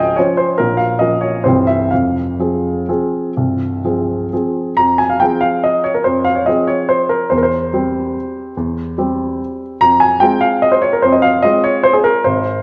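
Bittersweet and elegant, this brief classical piano waltz in F minor moves in 3/4 with a rubato feel, its tempo flexing between 120 and 154 BPM. A solo upright piano carries the whole piece from 0.0 to 12.6 seconds, ranging from C1 up to Bb5 with a woody, polished tone that sits up front, its notes decaying quickly. The harmony opens on Dbmaj7 and passes through Bbm and C before settling on Fm at 1.9 seconds, later touching C/E at 7.3 seconds and returning to Fm at 9.8 seconds. The phrase is stated and then repeated, the second statement beginning at 4.8 seconds. A moderate scoring-stage reverb surrounds the instrument, while a worn, warbling cassette character adds a warbly pitch drift, and the music is cut from a longer piece.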